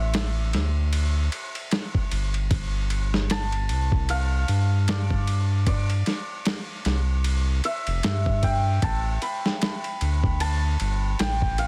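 Trip hop at 76 BPM with a lazy sixteenth-note swing, this smoky, hypnotic excerpt pairs a bright, shimmering santur with tape echo over a round, deep analog bass touched by ring modulation and a gritty, overdriven sampler-style kit of thumpy kick, snare and ride, while the chords move from A5 to G9sus4 at 2.5 seconds and Asus2 at 8.8 seconds beneath a dense, heavily limited master with vinyl crackle and digital ambience.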